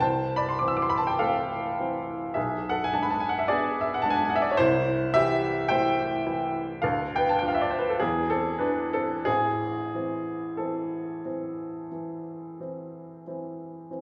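A clear, woody upright piano sits up front in a wet recital hall, its polished tone trailing into a reverberant church-like space. This melancholic, wistful romantic nocturne in A minor moves at a slow, rubato 44-54 BPM in 4/4, spanning A1 to E6 as the solo piano plays through the full 14.0 seconds, cut from a longer piece. Its harmony drifts from Am/C through G#dim/B and Dm to an open E5 at 8.0 seconds before settling on Am at 9.3 seconds.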